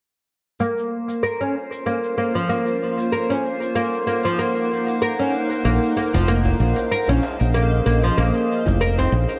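Opening at 0.6 s with a deep, double-strung oud playing filtered, delayed arpeggios over a tape-tinged electronic shaker, this meditative organic downtempo excerpt in Bb minor at 95 BPM, swung on the 16ths, soon gathers a calm, drifting glass-harmonics texture held on C5 with chorus, and a cloudy, evolving granular pad of bright sustained chords moving through Bbmadd9, Ebm, Dbmaj9 and Ab69, before a round, dark fretless electric bass arrives up front at 5.6 s and a distant djembe with metal rattles joins at 6.0 s, all set in a light reverb.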